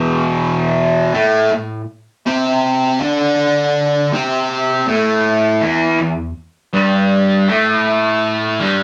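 A moderate studio ambience surrounds a lone fuzz guitar, double-tracked and placed up front, its distorted, picked electric tone colored by phaser throughout this 8.8-second cut from a longer rock piece. The mood is mysterious and trippy, unfolding at 54 BPM in dotted quarters in 6/8 with a straight feel, in A minor and tuned to A4 = 438 Hz. Spanning E2 to D4, the guitar opens on an E5 chord, moves to Am at 1.1 seconds and shifts to Emadd11 at 5.6 seconds.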